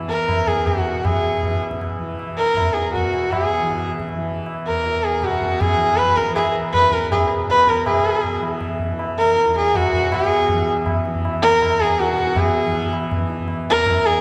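A bowed sarangi leads this radiant, meditative Hindustani classical excerpt, placed up front with a nasal, biting tone that softens into a smooth top as it glides between notes with portamento and light vibrato, its sympathetic strings adding an earthy halo. A single player carries the melody in a narrow upper-middle range from the opening moments, and the line moves into a new section at 7.9 seconds. Beneath it, a tanpura drone sits low and mellow, its softly plucked strings buzzing and shimmering from the very start. High-tuned tabla enters at 0.3 seconds with a ringing, acoustic sound that feels close and small-roomed, marking a steady three-beat cycle. The whole performance is bathed in the long, lush reverb of a church or concert hall, giving the raga a spacious, radiant glow.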